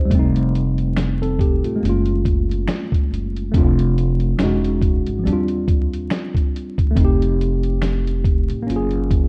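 A lazy, swung groove at a slow pace anchors this short, mellow and dreamy lo-fi hip hop excerpt, carried by a sampler-style drum kit that comes in at 0.1 seconds with a thumpy kick, a medium-tuned snare, hi-hat and finger snaps. The drums sound compressed, pitched down and muffled, sitting up front and slightly louder than the other parts. A pizzicato upright bass with a woody, dark gut-string tone supplies the low end, thumpy and close. A worn, slightly out-of-tune tine electric piano plays the chords, its clean, direct sound softened by cassette tape colour and a low-pass filter as it moves through lush harmonies from F9 to Gbmaj9 and down through Emaj13 and Ebmaj13. Light reverb, a small-room ambience and a layer of vinyl crackle give the whole piece the hazy intimacy of a rough home demo.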